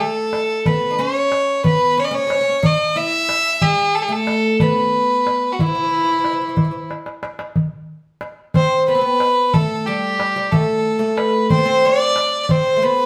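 This Arabic maqam ensemble piece, cut from a longer performance, feels festive and passionate as it moves in a straight 6/8. A single bowed violin carries the melody up front, its clear tone touched with light vibrato and an earthy grain. Beneath it, a fretless oud plucked with a plectrum plays a second line, its double strings giving a bright, woody sound. A small metal-shell darbuka enters at 0.3 seconds, crisp and high under soft hands, miked close, and plays a fill from 6.9 seconds that leads into a new section at 7.6 seconds. The trio sounds like a band playing live together in a reverberant stone room.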